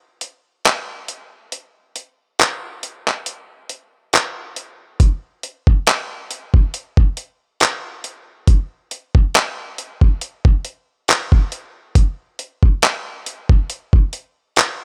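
A dusty, sampler-style soul drum kit starts at 0.2 seconds, sitting up front in a dry, close space. This short R&B fragment, cut from a longer piece, carries a tender, romantic mood through a slow, gently swung 4/4 groove. The kit pairs a thumpy kick drum with handclaps and hi-hat, all at natural pitch and given a gritty, compressed, tape-warm character. The opening five seconds form a break, after which the drums carry on through the rest of the passage until 14.8 seconds.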